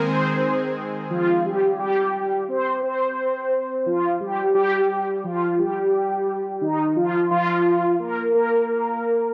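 This synthwave fragment, cut from a longer piece, opens with a mellow synth brass melody over a lush unison pad holding an Ab chord, setting a nocturnal, nostalgic mood in a straight 4/4. The pad is thick, detuned and warbling, with a vintage sawtooth character, slow attack, long release and chorus, sitting bright and up front before it stops at 1.4 seconds. From there the brass carries on alone until 9.3 seconds. Its brassy, round tone blends sawtooth and square waves with a sub octave, a filter sweep, vibrato, chorus and tape echo, giving it a dark, up-front presence within a modest range. A wet recital hall reverb with digital ambience surrounds the sound, the top end is rolled off around 10.5 kHz, and the tuning sits slightly flat at A4 = 438 Hz.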